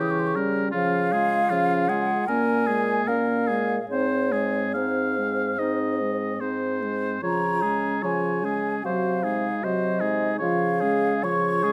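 Classical wind quintet music in a slow, lyrical romantic movement, this excerpt from a longer piece moves at 74 BPM in 4/4 with free rubato in Db major. An airy, hollow flute carries the melody with vibrato and a soft attack, while a clear oboe sits up front with light vibrato on the second line. Beneath them, a close-miked clarinet in the background and a mellow, distant French horn fill in the accompaniment over a dark bassoon bass, all heard through close, detailed microphones in a moderate recital hall reverb.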